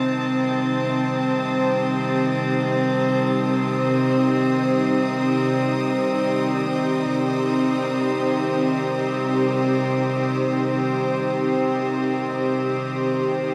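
Serene and melancholic, this ambient passage in free time is cut from a longer piece and rests on a single C minor chord, with a chamber string section up front holding soft-attacked, sul tasto chords that sound pure and floating. Beneath it, a detuned analog drone of sawtooth and pulse waves with pulse-width modulation and chorus evolves in the background, gradually fading out across the whole passage, while a studio violin section adds a focused, vibrato-laden texture higher up. A lush hall reverb and a cassette tape character give the whole a softly worn, spacious finish.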